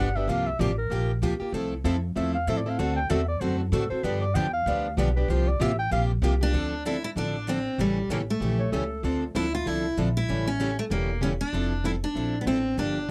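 A dry, close 1970s-style studio sound with light reverb frames this bittersweet, swinging excerpt of acoustic string swing at 192 BPM, where a mellow, smooth-topped clarinet with light vibrato, subtone and scooped notes solos up front from 0.0 s over two picked steel-string guitars (one plugged-in, boxy parlour tone, the other bright with fresh strings) and a woody, thumpy gut-string upright bass, before the music settles into D minor at 6.5 s and a fresh-stringed picked steel-string guitar with finger squeak takes the melody from 6.4 s.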